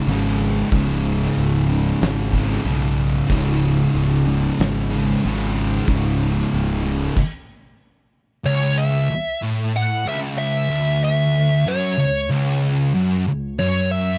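A straight 4/4 pulse at 93 BPM drives this heavy, brooding stoner and doom metal excerpt, where a double-tracked overdriven guitar and two thick fuzz guitars grind a low riff on C#5 in the background while a growly, up-front fuzz bass and an oversized low-tuned drum kit with a fat snare, punchy kick and saturated, rolled-off top pound beneath them until a stop at 7.2 seconds, after which a compressed fuzz lead guitar with wah and tape echo sings high over the riffing guitars in C# minor from 8.5 seconds, shifting to F#5 at 13.6 seconds, in a dry, close 1970s-style studio recording.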